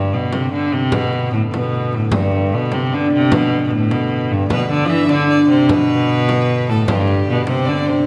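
Medieval dance in a festive, ancient, straight 6/8, cut from a longer piece, led by an up-front fretted viola da gamba whose biting, reedy gut-string tone carries a light vibrato and a touch of tape echo. A fingerpicked concert harp rings softly in the background as a second line, a hollow, very quiet chamber organ flute stop holds a mellow drone with a hint of chiff, and a close, dry frame drum played with hard hands sits behind from 0.3 seconds. At 4.5 seconds a focused, boxy fiddle joins with a second line of its own, all set in a wet recital hall.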